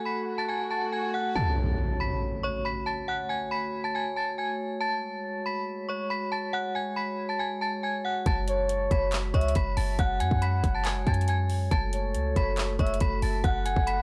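A ringing, inharmonic FM bell melody with chorus, tremolo and low-pass filtering opens over ethereal glass harmonica chords and an electronic swell that hits an impact at 1.4 seconds, before a clean, boomy 808-style bass and an up-front trap kit with a hard-clipped kick, metallic hats and handclaps arrive at 8.3 seconds and a smooth, gliding portamento lead with phaser and analog delay follows at 8.5 seconds, giving this dark, menacing half-time trap cut in F# minor at 139 BPM a gritty, cassette-tinged sound.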